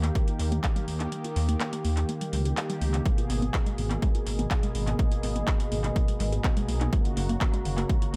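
A straight 4/4 pulse at 124 BPM drives this hypnotic, driving melodic techno in G# minor, where a punchy, up-front electronic kick drops out from 1.1 to 3.1 seconds while a techno kit of handclaps and metallic, echoing, pumping hi-hats keeps going; a rumbling, detuned sawtooth bass sits up front; a warbling, lo-fi pluck plays filter-swept arpeggios in the background; a brassy, bold analog pad with chorus, vibrato and a moving notch fires sidechained stabs; and from 4.0 seconds a moody, evolving ambient pad adds slow-attack sustained chords, all over a D#, G#madd9 and F# progression in a dry but echo-heavy mix.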